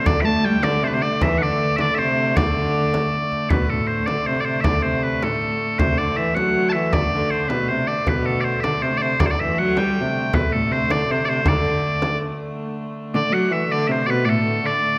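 This medieval dance in 6/8 and D mixolydian has an ancient, festive mood: it starts at 106 BPM counted in dotted quarters and speeds up throughout the 15-second excerpt. Piercing bagpipes carry the melody up front, and a ringing, gut-strung viola da gamba plays a biting second line with light vibrato and an airy bow. Beneath them, a smooth hurdy-gurdy drone sits distant in the background, and a deep, saturated frame drum struck with hard hands drives the dance until 12.2 seconds, all inside the reverb of a recital hall.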